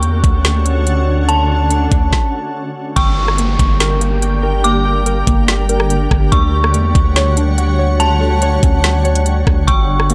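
Blissful and floating, this atmospheric cloud-rap excerpt in D major moves at 143 BPM with a half-time feel, its chords drifting from Dmaj7 to Gm and back. Up-front electronic trap drums, with a knocking kick, woody snare and crisp hats, sit beside a deep, mellow sine 808 bass. Above them float a shimmering, ethereal granular pad with chorus, reverb and sidechain pumping, and an eerie, inharmonic FM bell melody with chorus and tape echo. After a stop from 2.1 s, a soft, round, wave-folded pluck enters at 3.0 s with background arpeggios, while a background swell and downlifter, running from 1.1 s to 6.3 s, add atmosphere within light reverb.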